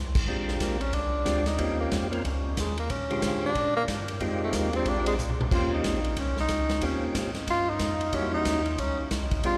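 A brisk swung pulse at 184 BPM in 4/4 drives this bluesy, soulful soul jazz organ trio clip, cut from a longer piece. A vintage acoustic drum kit sits up front with dark cymbals, a medium-tuned snare and a tight kick, its rolled-off top keeping crash, ride, hi-hat and toms soft-edged, with a short fill at 5.2 seconds. A piping, scooped tonewheel organ holds the bass line through a stopped rotary speaker, while a second, percussive tonewheel organ with third harmonic percussion adds mellow, round melody figures through a slow-turning rotary speaker. Entering at 0.6 seconds, an up-front tenor saxophone takes the solo in a smooth jazz style with light vibrato, moving over bluesy thirteenth chords and a diminished turn near the end. A cathedral-like reverb with a long five-second tail bathes the whole in the spacious sound of a church or concert hall.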